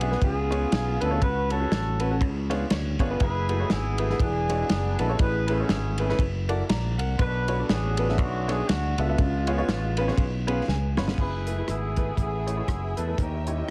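Heavily compressed into a radio-like sound with light reverb, this soulful, solemn uptempo gospel passage in F# minor swings at 120 BPM as a mellow, vintage horn section carries the melody over brilliant, woody upright piano chords, a growly, punchy fingered electric bass and a dry soul drum kit with dark cymbals, with piano and drum fills around 10.2 and 10.7 seconds before a distant, lush string section enters at 11.2 seconds.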